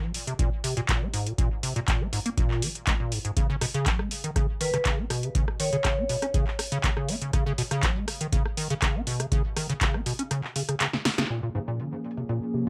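A squelchy, resonant square-wave acid bass riff opens this raw, gritty acid house excerpt at 121 BPM, tube-saturated and pumping under sidechain with chorus and delay, and is soon joined by a dry analog drum machine of punchy snare, metallic filtered hats, rim clicks and handclaps, along with a deep, tape-toned electronic kick, while a bright vibraphone struck with hard mallets rings through a digital delay from 4.6 s, and after a drum fill a smooth, detuned sawtooth pad with soft, chorused chords enters at 11.3 s on Bbm7 as a filter sweeps across the bass in a moderate studio ambience.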